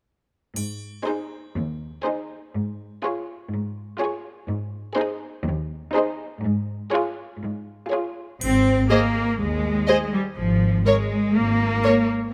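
This playful, whimsical film cue in Ab major at 122 BPM opens at 0.6 seconds with an up-front cello section on the bass line and a close, dry triangle. Two rich violin sections with expressive vibrato enter at 1.1 seconds, one carrying the melody and the other a second line, over a smooth, distant viola accompaniment, while the harmony sways between Ab and Db over an Ab bass for a magical air. At 8.4 seconds the triangle returns and a focused, lush double bass section joins beneath the cellos, before the harmony moves to Bb7 over Ab at 10.4 seconds, all set in light reverb in this passage cut from a longer piece.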